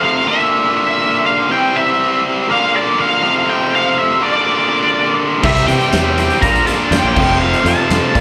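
An octave-fuzz lead guitar with wah and distortion carries the melody over an up-front overdriven electric guitar riff with slapback echo in this confident, driving classic rock cut heard through a club PA, and at 5.4 s a huge arena drum kit with a fat snare and punchy kick, a growly fuzz fingered electric bass, a very quiet cranked stack guitar riff, a jangly, detuned honky-tonk upright piano and a barely audible, shouting tonewheel organ with fast rotary speaker all join in.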